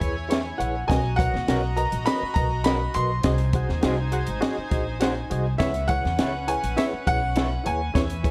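A baby grand piano carries the melody from 0.6 seconds, its natural tone ringing with long sustain high in the register, over this danceable, uplifting slice of 1960s-style soul in a straight four. Beneath it, a reedy, slightly worn electric piano with tremolo plays accompaniment through its built-in speakers, sounding a touch out of tune, while a bowed studio string section adds a nasal, gut-string second line in period style. A twangy electric guitar through a small old amp sits in the background with picked, slightly broken-up stabs from 0.3 to 7.5 seconds. Up front, a woody, thumpy pizzicato upright bass and a compact cocktail kit, with a punchy kick, a high-tuned snare and hi-hat under a dark, rolled-off top, drive the groove. The harmony moves from C#m7 through Bmaj7 and G#7 before returning to C#m7, and the dry, close sound has little reverb, giving this short cut from a longer piece an intimate, warm studio feel.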